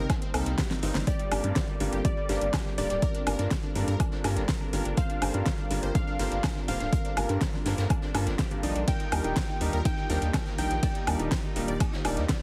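Progressive house at 123 BPM in G minor, driving and emotional, this cut from a longer piece sets an up-front, overdriven, punchy electronic kick and an overdriven deep house kit with fat snare and metallic hats over a faint, roomy jazz brush kit. Beneath them sit a round, dark analog bass, a smooth chorused analog pad and a bright, phased sawtooth unison pluck playing arpeggios in the background, each pumping with the sidechain. A warm grand piano with audible action noise adds delayed stabs, and after a drum fill at 0.7 s a catchy, mellow plucky unison lead carries the melody from 1.1 s, as the harmony moves from Cm7 to Gm7 and later to Ebmaj7. The mix is heavily compressed for a radio sound within a small room ambience.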